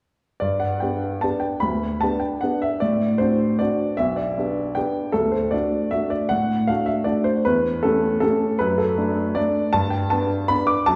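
Classical piano waltz in 3/4, graceful and elegant, with a rubato feel that lets the phrasing breathe, taken from a longer piece. A solo upright piano with a woody, intimate tone and audible action noise plays from 0.4 to 11.0 seconds, sitting up front and spanning a broad register from deep bass to bright upper notes. The piano is wrapped in the wet reverb of a recital hall, heard from further back in the room, which lends the brief passage a natural sense of space.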